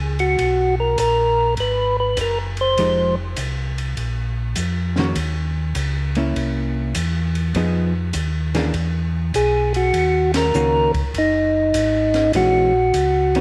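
Lightly reverberant and smoky, this soulful soul jazz organ trio excerpt swings at 100 BPM in Eb minor, with a round, mellow tonewheel organ bass up front through a slow rotary speaker, a percussive third-harmonic organ melody that sounds at the start and returns at 9.4 seconds, an open acoustic drum kit with dark cymbals, a high-tuned snare and a boomy kick, and a clean, compressed hollow-body electric guitar that joins at 2.8 seconds, all hitting a band accent at 10.2 seconds over rich minor ninth and altered seventh chords.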